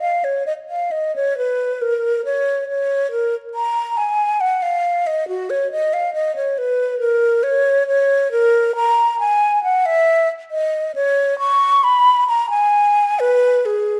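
A solo concert flute carries this short classical passage, its hollow, airy tone sitting up front with a soft attack and vibrato. Written in the manner of a baroque fantasia for the unaccompanied instrument, the line moves in a flowing, dance-like three-beat metre, shaped with free rubato. The flute ranges from F#4 up to C#6 across the full 14 seconds, playing alone throughout. A moderate recital hall reverb gives the mellow sound a natural sense of space, while a layer of vinyl crackle lends the recording an aged character. The passage is cut from a longer piece.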